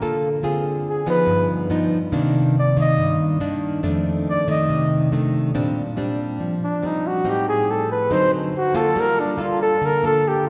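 A fingerpicked nylon-string guitar with fresh, classical-toned strings opens this intimate, wistful bossa nova in G minor at 141 BPM, and at 0.9 seconds a close-miked, warm flugelhorn steps up front to solo in a jazz style with light vibrato over rich chords such as Cm9, Bb69 and D7b9, both parts bathed in the wet, lingering reverb of a church-like hall in this short cut from a longer piece.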